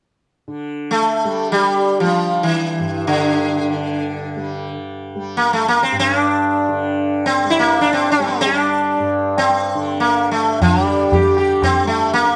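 In free time, this excerpt of a Hindustani classical performance in raga Bhimpalasi on G unfolds with a meditative, solemn mood as a warm, softly plucked tanpura drone settles in at 0.5 s and a plectrum-plucked sitar joins just after. The sitar sits up front with a bright, buzzing tone, shimmering sympathetic strings and a touch of slapback echo. At 10.6 s a low-tuned, ringing tabla enters, all captured in a dry, close 1970s-style studio sound with light reverb.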